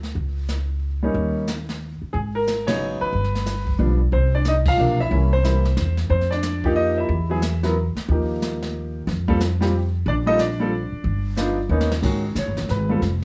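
A grand piano carries the melody, sitting up front with a natural, warm tone as it enters at 1.0 second and ranges from the low register to bright upper lines. This moody, smoky jazz piano trio excerpt swings in a brisk 3/4 at 182 BPM. Beneath it, a pizzicato upright bass with steel strings sounds woody and close, anchoring the low register. A brushed drum kit with dark cymbals, a medium-tuned snare and a boomy kick sits a little further back, with the band landing on a couple of shared accents along the way. The chords wander restlessly through suspended, ninth and altered colours, and a drum fill at 11.7 seconds leads into a short piano solo at 12.0 seconds. Light reverb gives the trio the intimate feel of a small room.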